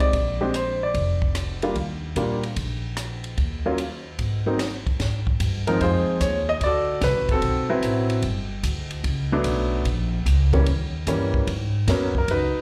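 A brisk 148 BPM swing in 4/4 drives this short, swinging piano trio clip, cut from a longer live club performance heard through the venue's PA with small-room reverb. Up front, a baby grand carries the melody with a natural, warm tone and a touch of slapback echo, beside a woody, dark pizzicato upright bass on steel strings; a dry cocktail kit of punchy kick, high-tuned snare, rim click, hi-hat and dark ride sits further back. The harmony opens on Bbadd9 and breaks briefly at 3.4 seconds, then a new passage from 5.0 seconds moves through D13 and Gmaj9 to Eb7b9 and Abm11.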